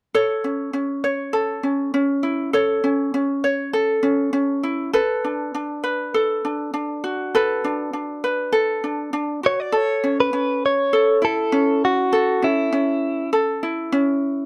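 Lightly reverberant, this heartfelt, easy-going pop fragment opens with a bright, fingerpicked ukulele up front before a clean, compressed, scooped electric guitar, recorded direct, enters with a picked melody at 9.5 seconds and falls away at 13.3 seconds.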